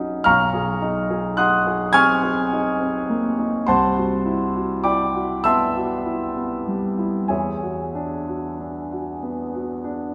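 A warm concert grand piano carries this short impressionist classical piece alone, spanning B1 to Ab6 with deep bass, an open tone and long sustain, placed up front. The mood is wistful and mysterious, moving at a slow 31-36 BPM in 6/8 with a free, rubato feel. Colorful harmonies drift past: an Abadd9/Cb at 0.3 seconds, a Cmaj7#11 at 3.7 seconds, and an E9 at 7.3 seconds. A wet church reverb with a three-second tail surrounds the instrument, giving the sound the resonance of a church or concert hall. The ten-second fragment is cut from a longer work.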